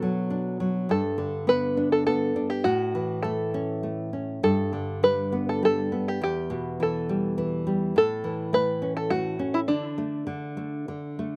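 Moving in a loose, rubato 3/4 at around 102 BPM, this short cut from a longer children's lullaby has a gentle, innocent mood. An open-back banjo carries the melody between D4 and B4, its fingerpicked notes twangy and plunky with a percussive bite and a slapback echo. Beneath it, a fingerpicked nylon-string guitar gives a full-bodied, deep classical accompaniment reaching down to E2, with audible finger squeak. Both instruments sit up front, and the harmony moves through Bm7, G, A, G, Em and A before settling on D5. The banjo stops at 10.8 seconds, leaving the guitar to ring on until 11.4 seconds, all captured outdoors with a dry sound and little reverb.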